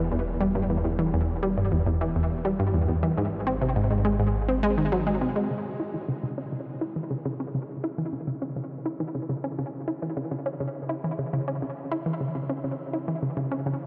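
A straight 4/4 pulse drives this hypnotic, cosmic stretch of sequencer-driven space music, cut from a longer piece, where a bright, detuned sawtooth pluck repeats its riff up front through chorus and tape echo, with a filter sweep running over it during the opening 5.5 seconds. Beneath it, a deep, dark analog bass blending sawtooth, sine and triangle tones holds sustained notes until it drops out at 5.5 seconds, as the harmony moves from E minor through G sharp to C sharp minor. The whole sound sits in a huge, wet ambient reverb and carries the worn, warbling pitch drift of old cassette tape.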